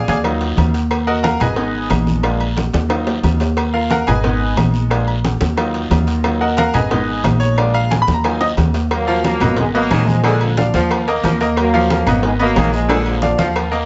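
A bright, brilliant concert grand piano with a worn, deep-voiced low end leads this fiery, danceable salsa excerpt, carrying the first 8.9 seconds over a pizzicato upright bass that sits dark and woody up front. Round low-tuned cowbell, ringing metal-shelled agogo bells and timbales, thin-skinned vintage congas, a raspy guiro and quiet, saturated claves drive the groove, with drum fills breaking through around 2.9 and 8.4 seconds. At 8.9 seconds a punchy trombone section with light vibrato and plate reverb takes the melody, joined by a smooth-topped, tight saxophone section in the background as the minor-key harmony cycles toward its dominant chord.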